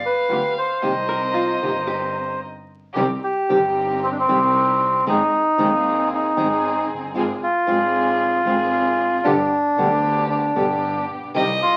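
Heard through the crackle of a very old 78 rpm record in a moderate studio reverb, this melancholic, sultry tango excerpt moves with a rubato feel, led by a reedy, dark bandoneon melody up front. A violin with vibrato and portamento and a clean, compressed electric archtop guitar add second lines early on, before a brief stop at 2.4 seconds. Beneath them, a full-bodied fingerpicked nylon-string guitar with audible finger squeak, veiled con sordino chamber strings playing soft-attack stabs, and a nasal, earthy bowed double bass carry the accompaniment, with the violin returning briefly at 11.4 seconds.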